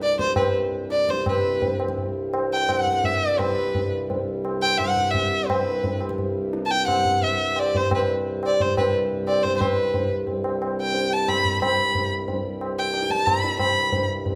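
A bowed violin with a dark, expressive tone opens this devotional, radiant Hindustani classical excerpt, sitting up front alongside a low harmonium drone and high-tuned tabla from the very first moment. Set in raga Yaman on C, in a straight 3/4 metre, the music moves at roughly 167 to 183 BPM and gradually speeds up across its length. The single violinist carries the melody between B4 and B5, shaping each phrase with vibrato and portamento. Beneath it, the pedal harmonium holds a reedy, breathing drone deep in the low register, while the ringing tabla sounds distant, as if heard across a large room. A lush scoring-stage reverb bathes the ensemble in generous space. The violin falls silent at 14.1 seconds, just before the drone and drums reach the end of this fragment of a longer piece.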